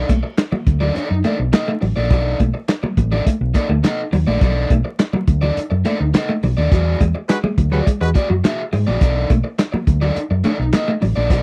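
Funky and gritty, this short cut from a longer funk piece moves at 104 BPM in a straight 4/4, with a dry, close 1970s-style studio sound dusted with vinyl crackle. A muffled, lo-fi soul drum kit sits up front with a tight kick, medium-tuned snare, hi-hat and handclaps, while a round, dark hollow-body bass played with the fingers holds the low end beside it. An overdriven garage guitar, picked, supplies the accompaniment, and a clean, scooped semi-hollow guitar with subtle chorus carries the riff in a low, narrow range. Very quiet, high-tuned congas with a thin, damped skin add bright percussion under the groove. The harmony rests on B7#9 before the band hits an accent on E9 at 6.7 seconds, where a tight horn section with light vibrato briefly enters at 7.3 seconds, and the chord returns to B7#9 at 9.0 seconds.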